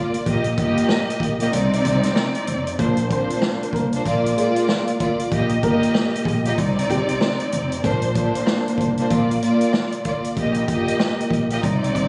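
Captured on a phone in a small room with club reverb, this dark, reflective boom-bap hip-hop excerpt moves at 95 BPM with a swung 16th-note feel. Lush bowed strings sit up front with expressive vibrato over a vintage drum kit carrying 12-bit sampler grit and a punchy kick that is briefly muted early on. A thumpy pizzicato upright bass holds the low end under chords moving between Eb, Cmadd9, Bbadd9 and Bb, and from 3.1 to 7.5 seconds a worn, slightly detuned upright piano carries the melody in the background, its woody action noise audible through tape echo.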